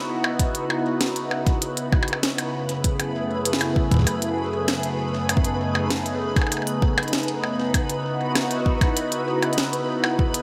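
A straight 4/4 pulse at 98 BPM, set by a deep, up-front electronic kick and a glitchy, tape-warm kit of clicky hats, a tiny snare and percussion blips treated with delay, drives this eerie IDM excerpt in C# minor, where a swirling, detuned sawtooth pad with phaser, chorus and vintage 12-bit sampler grit sustains C#m11 and F#m11 chords while a flickering, grainy granular texture with its own built-in reverb hovers in the background, the whole mix sitting in a moderate echo-chamber reverb.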